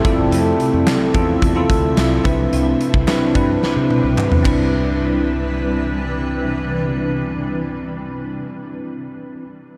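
A bell-like tine electric piano fill opens this short, nostalgic 1980s-style pop excerpt in C major at 109 BPM, sounding together with a cloudy, evolving granular pad, a round fretless bass and a punchy, up-front rock kit with bright cymbals and a drum fill that stops at 4.6 seconds, while a very quiet, crisp group handclap sits beneath the Fmaj7 to Cmaj9 changes and a huge ambient reverb leaves the whole glossy mix dreamy and soaked.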